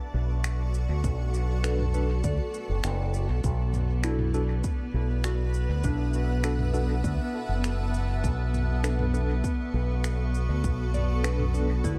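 An echo-heavy mix with little reverb gives this meditative, hazy stretch of ambient dub, cut from a longer piece, its floating depth. A cloudy, detuned granular pad holds sustained chords over a bright, up-front fingered electric bass with an envelope filter, while a soft, pure FM synth bell plays arpeggios through chorus, phaser and dub echo in the background. An organic electronic drum kit of tape-warm finger snaps, shaker and toms joins at 0.4 s and a deep, overdriven electronic kick at 1.0 s, as a worn, slightly out-of-tune tine electric piano adds tremolo stabs through a combo amp and a glassy harmonics texture drifts in at 4.2 s.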